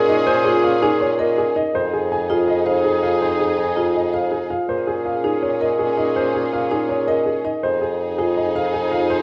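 This meditative, hypnotic stretch of minimalist classical pattern music, cut from a longer piece, opens with an intimate, up-front baby grand piano carrying the melody, its action noise audible beneath the notes. A distant, roomy clarinet holds a mellow second line in the background. A lush, bowed studio string section sustains smooth chords with vibrato, while an up-front bassoon with light vibrato and a vintage character anchors the bass. From 0.1 seconds a marimba played with medium mallets adds warm arpeggios. The harmony sways between Bbm7 and Fm7 under a moderate scoring-stage reverb, and the whole recording carries the warbling pitch drift of worn old cassette tape.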